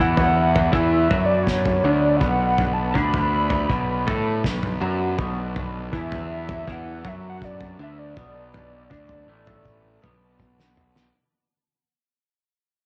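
A hollow, woody square-wave lead carries the melody through chorus and tape echo, its detuned tone dark and wavering with vibrato, until it drops out at 10.4 s and a drum fill takes over. Beneath it, a phased, slightly broken-up guitar riff and a round, punchy fuzz bass sit over a muffled, cloth-damped kit with a fat snare and tight kick, while a buzzy, heavily vibratoed combo organ holds sustained chords very quietly in the background. This hazy, hypnotic psychedelic rock passage is cut from a longer piece, and it fades out throughout, bathed in a moderate echo-chamber reverb.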